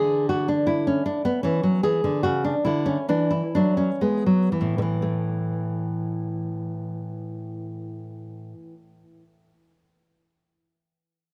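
In a rubato 4/4 that slows through the first 5.0 seconds and ranges between 58 and 84 BPM, this short cut from a longer baroque-style classical dance in A major features a solo nylon-string guitar, dark and fingerpicked with audible finger squeak, placed up front under close, detailed microphones and light reverb, moving from C#madd11 through an E7 lacking its third to settle on A5 at 5.0 seconds in a serene, dance-like mood.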